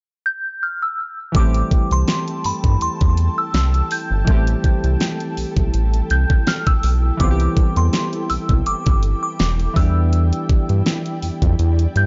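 Contemporary R&B in A minor at 82 BPM with a gentle sixteenth-note swing, moody and full of longing, opens with a glassy, crystalline FM synth bell carrying the melody through chorus and delay before round, deep analog bass, a smooth drum kit with knocking kick, fat snare and warm hats, and warm analog keys with ring modulation and a filter sweep all arrive at 1.3 seconds, an ethereal detuned pad drifts in at 1.9 seconds with ensemble chorus and its own reverb, and the dark production moves through Am7, Cmaj7 and Em7 in this fragment of a longer piece.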